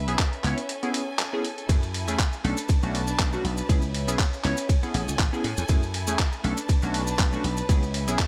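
A rich chamber violin section holds bowed, vibrato-laden chords over a bright, foam-muted thumbed slap bass, soon joined by a funky sawtooth-and-square polysynth comp with chorus, phaser and cassette-tape colour, a gritty, overdriven sampler-style kit of handclaps, hi-hat and ride, and a punchy electronic kick up front. This is a nostalgic, funky filtered disco house fragment at 120 BPM in B dorian with a light 16th-note swing, where the violins, bass, synth, hats, cymbals and percussion all pump against the kick. After a break from 0.7 to 1.7 s, background maracas enter as the harmony cycles through C#m7, Amaj7, F#m9 and Bm7, all wrapped in light reverb and bright 1980s-style digital production.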